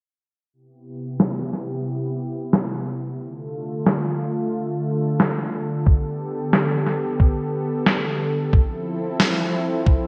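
Romantic and dreamy, this synthwave excerpt drifts on a smooth, detuned sawtooth pad with chorus and sidechain pumping, its filter sweeping throughout over Cmaj7, Dm, Gadd9 and Fmaj7 chords, while a medium-tuned electronic snare with gated reverb enters at 1.2 seconds and a thumpy electronic kick joins at 5.9 seconds, all set in a lush hall reverb with a bright 1980s-style digital sheen.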